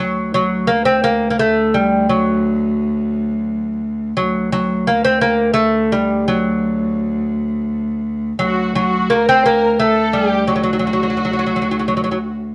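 A dark production with a moderate studio reverb frames this passionate Persian modal piece in D dastgah homayun, moving at 57 beats per minute in a straight 6/8. Up front, a delicate, fingerpicked lute with gut double strings and some octave-doubled courses carries the melody through a plate reverb, while a single rich, nasal cello bowed with light vibrato holds an intense, boxy drone on D beneath it. At 8.4 seconds a distant, woody violin section enters softly with a bowed, vibrato-laden second line, adding a dark shading before this brief excerpt ends at 12.5 seconds.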